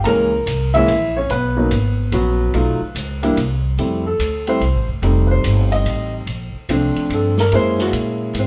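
Swinging and relaxed, this short jazz piano trio excerpt moves at 145 BPM in a lilting 3/4 with swung eighths, settling into F major from 3.8 seconds. A concert grand piano with deep bass, an open tone and long sustain carries the melody up front, ranging from Fb3 to Bb5, and takes a solo from 3.8 seconds to the end. An upright bass, plucked and woody with steel strings, sits close beside it and anchors the low end between F1 and Bb2. Entering at 0.1 seconds, a big-band drum kit plays hi-hat, ride cymbal and snare from a distance, its dark cymbals, medium-tuned snare and rolled-off top giving it a roomy presence well behind the other two. The band plays live together in a large studio with moderate reverb, and the harmony moves through rich extended chords such as Bbm9b5, Fmaj9 and Gb9.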